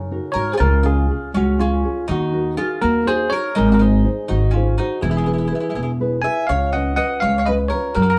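A brilliant, bell-like tine electric piano carries the melody of this lively, romantic Italian folk serenade in 6/8 at 82 BPM in Db major, heard from the start with a round, double-strung picked mandolin second line, dark, woody thumb-plucked nylon-string guitar accompaniment and an up-front pizzicato stand-up bass, the band playing live together in a wet small room as the chords move from Db through Ebm, Ab and E to Db7 in this short cut from a longer piece.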